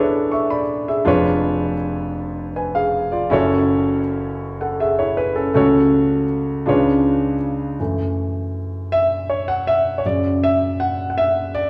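Soulful and fervent, this short gospel passage for solo concert grand piano moves in an unhurried 6/8 with a straight feel. The piano is intimate and up front, with deep bass, short sustain and audible action noise that keeps the sound natural and close. It opens on an E7sus4 and C#7b9/E# before settling into F#m7, then moves through F#m/C# and C#7b9. At 7.8 seconds a second section begins as a featured piano solo that returns to F#m7 and closes on Dmaj9/F#. A wet recital hall reverb places the instrument in a church-like space, and the recording is cut from a longer piece, ending at 11.7 seconds.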